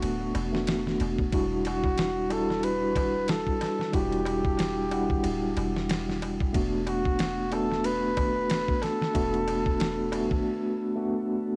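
Smoky and dark, this swung trip hop excerpt sets a veiled, breathy bucket-muted trumpet with light vibrato against a mellow tine electric piano that plays up front with tremolo, both carrying cassette tape coloring and tape echo, and the trumpet adds a gritty 12-bit sampler edge. Underneath, a dusty, compressed sampler-style kit puts a thumpy kick, fat snare and ride cymbal up front, while a round, sine-like 808-style bass sits deep and a small, crisp metal-shell darbuka sounds very quietly in the background. Everything drops out around 10.4 to 10.5 seconds, leaving the electric piano alone until 11.6 seconds in a dry, home-recorded cassette sound.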